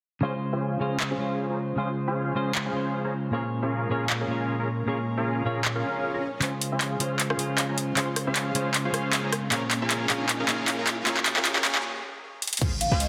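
A dense, heavily limited modern master sits in a lush hall reverb, giving this bright, euphoric future bass cut a polished, airy glow. At 155 BPM in a half-time 4/4 feel with a light swing on the sixteenths, it moves between Dbmaj7 and Bbm7 in Db major. From the start a huge, detuned supersaw riff and a clean, fingered electric guitar accompaniment both pump against the sidechain and trail delay. A dubstep drum kit enters at 1.0 seconds with metallic hats, handclaps, rim clicks and crash, and a soft, breathy pad with chorus follows at 1.1 seconds, holding sustained chords very quietly beneath the others. The track then pushes through a build-up where filter sweeps move across the supersaw and drum fills gather alongside a faint riser. After a short break, an impact lands at 12.6 seconds with a punchy electronic kick and a deep, boomy 808 bass, and a ringing, close-miked vibraphone slips in a brief melody just as the excerpt cuts off.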